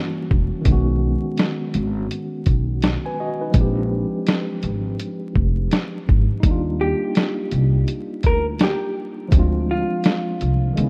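The upright bass's woody, gut-string pizzicato sits thumpy and up front from 0.3 s in this cosy, mellow lo-fi hip hop excerpt in Eb major, moving at 83 BPM in 4/4 with a swung sixteenth-note feel. A sampler-style drum kit enters alongside it, pitched down, compressed and muffled, with a thumpy kick, a medium-tuned snare and hi-hat pushed forward in the mix. A bright, clean tine electric piano carries the accompaniment throughout, heard through its built-in speakers and softened by a low-pass filter as the chords move from Gb7b9 and B6 through Bb13 to Ebmaj9 and Dm7b5. A vintage hollow-body jazz guitar, picked and compressed with a warm, clean tone, offers a brief note at the very start and then takes the melody from 6.8 s, filtered and trailed by analog delay. The dry, rough home-demo sound and vinyl crackle give it a cosy, intimate feel.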